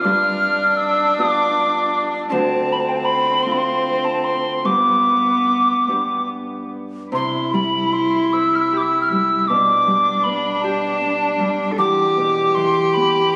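Celtic folk in the form of a slow air, this short cut from a longer piece moves in a rubato 6/8 at around 48-54 BPM, haunting and full of longing. A hollow wooden whistle carries the melody up front, its pure, mellow tone marked by vibrato, tongued notes and a chiff at the start of each. Beneath it, a single bowed cello sings a second line, also up front, with a warm, smooth, even sound that has a nasal, slightly boxy edge, colored by its own vibrato. A bright, fingerpicked Celtic harp supplies the accompaniment, its acoustic strings ringing through the chord changes from G7 through Dm7 to G, then on to C, Gadd9/B and a closing Em around 11.8 seconds. The trio sits in a wet church reverb with a long tail, yet the sound also carries the character of a phone recording in the room, with club reverb and compression adding a squeezed quality.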